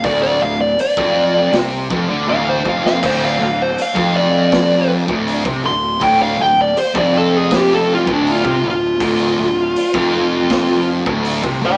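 A dark, fuzz-soaked lead guitar solos up front through this sludgy, brooding stoner and doom metal excerpt at 80 BPM in D minor, over a thick, double-tracked distorted guitar riff, a biting overdriven guitar riff and an overdriven, picked electric bass tucked in the background, while a raw garage drum kit with a boomy kick, saturated, gritty tone and rolled-off top drops a fill from 2.3 to 3.0 seconds, the band playing live in a stone room with a small speaker sound.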